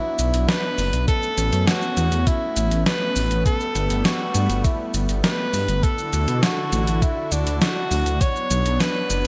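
Synthwave at 101 BPM in B minor, nocturnal and nostalgic, where a breathy, intimate tenor saxophone with light vibrato and delay carries the melody over a smooth, warbling analog pad with subtle chorus and sidechain pumping, a deep, rumbling detuned saw bass that also pumps, a clean 12-bit drum machine playing hi-hat, shaker and a medium-tuned snare through gated reverb, and a thumpy electronic kick entering at 1.1 seconds, all moving through Bm, Aadd9, Gadd9 and Dadd9 in a lush hall with bright 1980s-style digital sheen.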